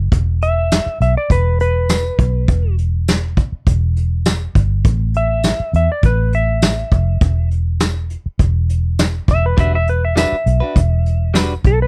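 This mournful, brooding soul blues excerpt opens with a vintage fingered electric bass, dark, round and foam-muted, sitting up front with an amped tone from the very start. A brush drum kit joins at 0.1 s with hi-hat, punchy kick, medium-tuned snare and tambourine, its sound distant and roomy with a rolled-off top, like a small room heard from across the floor. From 0.4 s a clean lap steel guitar carries the melody as a slide solo, its dark, fingered voice placed up front in a range from A4 to E5. The groove moves at a straight-eighth 102 BPM in 4/4 over E minor, with the harmony passing through E5, A5 and E7sus2. At 9.6 s a bright, compressed electric guitar, recorded direct and picked cleanly, adds short stabs alongside the slide line. The overall sound is dry and close, with little reverb around the players.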